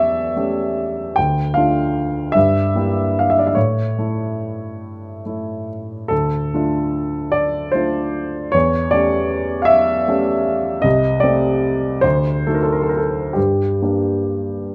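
A solo grand piano opens on an A7/E chord, its tone present and up front, setting a passionate, bittersweet mood from the first moment. This romantic classical character piece moves slowly in 6/8, at 44 to 52 beats per minute counted in dotted quarters, with a freely breathing rubato feel. The harmony passes through Dm, Edim/G and A before returning to Dm and A7/E, then settles into G minor at 10.8 s by way of Cm69 and D, arriving on Gm at 13.4 s. The piano spans C2 to G5, giving the writing a range from deep bass to the upper register. Light reverb and a dark, warm production surround the instrument, and the 14.7-second passage is cut from a longer piece.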